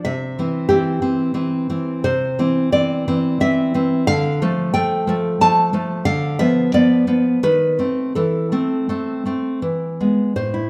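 Bathed in a moderate concert hall reverb, this brief, wistful and passionate excerpt of a romantic piece for solo classical guitar unfolds in a rubato 3/4, with a full-bodied, fingerpicked nylon-string guitar sitting up front as it moves from C through Dm and a tense B7b9/D# before settling toward Am/E and a closing E chord at 9.6 seconds.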